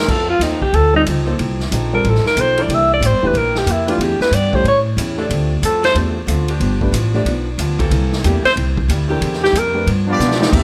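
A breathy, subtone alto saxophone opens this brassy, joyful big band swing excerpt at 184 BPM in C mixolydian. Its scooped notes sit up front over a woody, thumpy pizzicato upright bass, a distant, roomy drum kit with dark cymbals and a punchy kick, and a picked archtop guitar with finger squeak. A mellow baby grand piano with audible action noise and a saxophone section holding chords with vibrato settle into the background as the alto solo moves through F7, C7 and Dm7 toward G7. At 10.1 seconds a trumpet section and a bright, smooth-topped trombone section enter, both with light vibrato, alongside a drum fill as the fragment cuts off.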